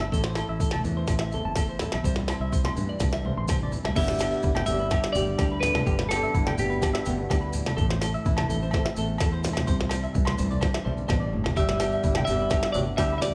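Highlife guitar band music with a danceable, sunny mood, played live in one room with a moderate large-studio reverb. A dark, fingerpicked flamenco guitar and a twangy, compressed electric guitar playing arpeggios ride over a round, foam-muted fingered bass and an up-front electronic drum kit with a soft kick and tiny snare. Ringing agogo bells and distant, low-tuned congas sit in the background, joined by grainy maracas. After a drum fill ending at 4.0 seconds, a clean, hollow-body semi-hollow electric guitar with spring reverb carries the melody, joined by a breathy, whispered tenor saxophone with scooped notes on a second line, the pair returning at 11.6 seconds.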